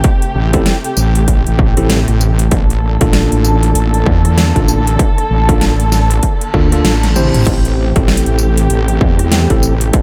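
Gritty and swaggering, this glitch hop excerpt rolls at 97 BPM with a swung 16th-note feel, built on a heavy, saturated wobble bass and a distorted, up-front electronic kick under a dubstep kit with a huge snare, metallic hats, rim clicks, tambourine, toms and crash. A worn, slightly out-of-tune tine electric piano punches in stabs with light overdrive, delay and sidechain pumping, while a dark, woody string section sits distant behind it, holding bowed chords with vibrato that also pump. The harmony moves from Am7 to Bbmaj7/A and back, and a reverse cymbal from 6.4 to 7.5 seconds rises under a drum fill into the return, all in a dry, close sound.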